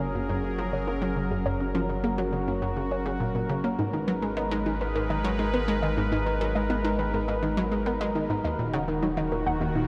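A bright, evolving sawtooth pad with chorus sits up front, holding sustained chords that move from Gbadd9 to Abmadd9 at 3.8 seconds and Ebm at 8.4 seconds in this cosmic, hypnotic slice of sequencer-driven ambient space music at 103 BPM in 4/4. Beneath it, a round, detuned analog pluck repeats a riff through chorus and delay, while a lo-fi, warbling pluck plays arpeggios in the background with its own filter sweep, chorus and delay. A deep sine sub bass anchors the bottom, and a huge, wet reverb with an 8.1-second tail gives the production its dark, warm cast.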